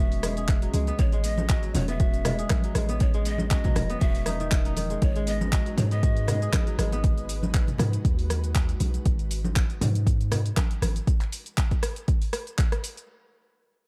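An overdriven, deep electronic kick sits up front in this spiritual, earthy afro house drop at 119 BPM in G# phrygian, with a swung 16th feel and a dark, warm production, cut from a longer piece. A boomy sine 808-style bass, a layered deep house kit of handclaps, hi-hat, rim click and shaker, and ringing background congas drive the groove, while a crisp fingerpicked kora plays pumping, delayed arpeggios. Breathy cane pan pipes carry an expressive, chiffy melody with delay until 6.8 s over an ethereal, warbling detuned pad moving from Amaj7 to G#m7 at 5.0 s.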